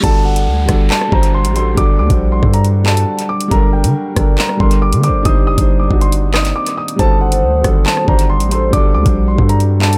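Drill-style hip hop at 138 BPM in 4/4 with a half-time feel, this cold, menacing passage is cut from a longer piece and set in an echo-heavy digital ambience. A dark concert grand piano carries both the melody, high between F#5 and Eb6, and a mellow, boxy accompaniment below, its tape echo and audible action noise lending a vintage, intimate shade. A punchy, hard-hitting 808-style bass sits up front with a fast attack and decaying tail, alongside a produced drill kit of knocking kick, metallic hi-hats, handclaps and rim clicks. From 1.3 seconds a deep, detuned ambient pad with chorus and slow attack holds sustained chords in the background, while a reverse cymbal and downlifter open the passage until 3.5 seconds. At 7.0 seconds a velvety synth lead with vibrato adds a brief second line, as the chords move from D/G through Gmadd9 and Cmadd9 and back to D/G.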